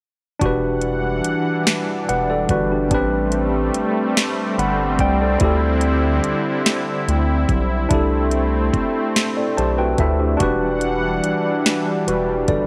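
A bright, slightly out-of-tune tine electric piano carries the accompaniment in this late-night, sultry excerpt of slow six-eight R&B in E minor at 48 BPM, moving through Em9, Am11 and D9sus4 and slipping in a fill from 9.2 to 10.4 seconds before returning to Em9. Beneath it, a smooth, detuned analog pad holds sustained chords with chorus and tremolo, while a deep, round analog bass sits up front. An electronic R&B drum kit with a knocking kick, sharp snare and metallic hi-hats plays throughout, all set in a light reverb.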